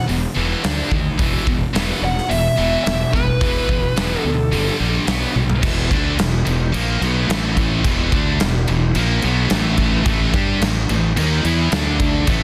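Energetic and anthemic, this hard rock excerpt drives along at 108 BPM in a straight 4/4, built on power chords moving among E5, D5, G5, B5 and A5. A dark, smooth overdriven lead guitar sits up front with a slapback echo, carrying the melody for the opening 4.8 seconds before dropping away. Beneath it, two bright, picked high-gain guitars, one of them scooped, churn out distorted riffs from the background, while a growly fuzz bass played with the fingers punches through up front. A huge arena drum kit with a punchy kick, medium-tuned snare, hi-hat, crash and toms fills a big natural room, and a drum fill at 5.4 seconds ushers in the second section at 5.6 seconds. Light reverb and studio ambience surround a dense, heavily limited modern master.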